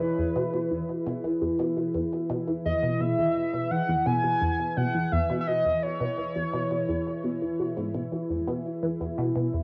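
A shimmering, warbling pulse-width lead carries the melody through chorus, plate reverb and delay until 7.2 s, floating over a bright, evolving sweeping resonant pad of sustained chords on E and a squelchy, juicy resonant blip pluck riff treated with phaser, lush chorus and delay, with all three parts tinted by cassette tape in this expansive, cosmic excerpt of sequencer-driven ambient space music in E major at 85 BPM, tuned to A4 = 445 Hz and set in a wet studio reverb with a home-recorded cassette character.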